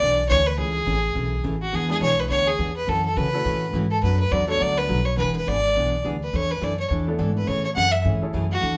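A clear, biting fiddle sits up front with light vibrato and an earthy, airy bow, carrying the melody through this playful, cheerful western swing excerpt, which moves over swung eighths and jazzy chords like Amaj7, F#m7 and E7sus4. Beneath it, a full-bodied picked dreadnought guitar keeps the accompaniment going and a thumpy, woody upright bass on gut strings holds down the bass line, while a bright upright piano with audible action noise and short sustain drops in from 1.9 to 4.9 seconds and again at 7.1 seconds. The band sounds like it is playing live in one room, wrapped in a wet studio reverb with a rounded, dark top end.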